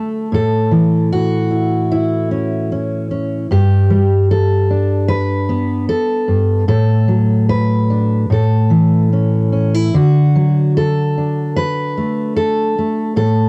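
A loose, rubato pulse in 4/4 around 75 BPM opens this short folk fragment for solo fingerstyle acoustic guitar, cut from a longer piece in D major. A single fingerpicked steel-string guitar carries everything from 0.0 to 13.5 seconds, its jumbo body giving a dark, full-bodied tone that sits up front, ranging from G2 up to B4. The harmony drifts from A to G, then through D/A and back to A before settling on D at 9.9 seconds. Cassette tape colours the guitar with a homespun grain, and light reverb adds a little air around this home recording. The mood is nostalgic and pastoral, like a private moment captured on tape.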